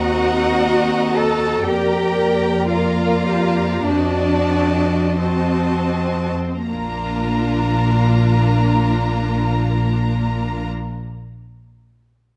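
A rich string orchestra opens together in a lyrical, rubato slow movement in Bb major at 39-62 BPM, with expressive, vibrato-laden violins singing the melody above a second violin line, focused violas in the accompaniment, and smooth cellos alongside an up-front double bass section, the pace slowing through the first 6.7 seconds before the harmony settles on Bb, all heard in a moderate scoring-stage reverb in this fragment cut from a longer piece.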